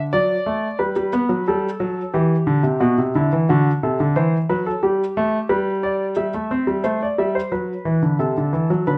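Close, detailed microphones catch a grand piano that sits up front and present in a moderate stone room, whose reverb adds a natural halo to each note's long sustain. This is a short section cut from a longer classical piece: a baroque-style two-part invention in G major, played at 89 BPM in a straight 4/4 with a lively, elegant character. The clear-toned piano plays alone throughout, ranging from B2 up to E5, and is tuned slightly below modern pitch, with A4 at 435 Hz. The opening phrase moves from D to G, then through C and D7 before settling back on G. At 6.2 seconds a new section begins over C with G in the bass and turns toward F-sharp minor before the passage breaks off at 9.0 seconds.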